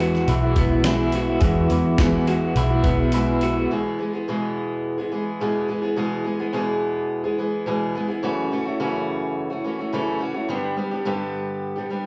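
Folk rock and heartland rock with a hopeful, nostalgic mood, cut from a longer piece and heard as a live gig through a club PA with light reverb. A dark, up-front picked acoustic guitar with finger squeak and slapback echo sits alongside a bright, twangy, slightly broken-up electric guitar riff with tremolo, a round, foam-muted electric bass, a gritty sampler-style kit with a thumpy kick and fat snare, and a very quiet, reedy electric piano that plays a fill from 2.8 seconds. The kick and snare drop out at 3.1 seconds, and from 3.7 seconds the acoustic guitar carries on alone through E, F#m7 and G.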